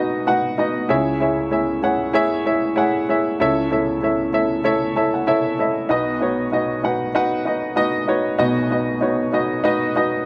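A gently swung 16th-note pulse at 96 BPM in 4/4 carries this anthemic, uplifting pop clip, where a lone woody, slightly detuned upright piano sits present and up front, moving through B, C#m and A/C# before a fill from 4.6 to 5.9 s lands back on B, all wrapped in light reverb and a dark, warm production.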